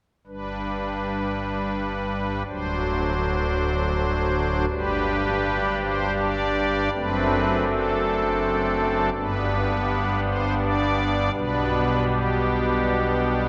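A solo pipe organ opens on its strings celeste stop, playing a majestic, reverent chorale in three-time, its soft, shimmering string tone voiced romantically and placed up front. The harmony moves between G and D7 chords, with a second phrase beginning at 4.7 seconds and settling on G/B. A long cathedral reverb surrounds the organ throughout this short passage, which is cut from a longer piece.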